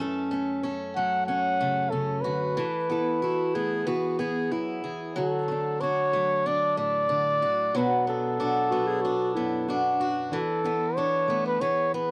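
A straight 4/4 pulse at 93 BPM carries this hopeful, nostalgic acoustic folk excerpt, which moves through F#m, Esus4, E, D, Bm and E7sus4. A fingerpicked archtop guitar sits up front with a warm tone and audible finger squeak, while a second picked guitar with a boxy, fresh-stringed sound adds swing-style arpeggios. At 1.0 seconds a trumpet with a bucket mute enters on the melody, its dark, veiled voice present and up front, played in a classical style with light vibrato. A mellow clarinet weaves a second line in a similar classical manner until it stops at 10.2 seconds. The close, dry 1970s-style studio sound carries only a touch of light reverb, keeping the small group intimate.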